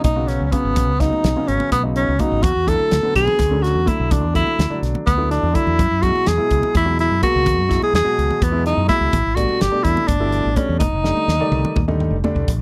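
Nocturnal and slick, this electric jazz fusion excerpt moves in 7/8 at 251 BPM in eighths, with a warm, up-front tenor saxophone soloing in vibrato-laden, scooped notes with a smooth top and a slapback echo over a grand piano whose intimate tone carries long sustain and audible action noise. A dark, round fretless electric bass and a polished acoustic drum kit with a punchy kick and medium-tuned snare drive the groove, the kit adding fills at 5.4 and 11.0 seconds, while damped, high-tuned congas played with soft hands sit in the background. The harmony shifts through suspended ninth chords from C#9sus4 to A9sus4 before landing on F13, all captured in a dry, close 1970s-style studio sound.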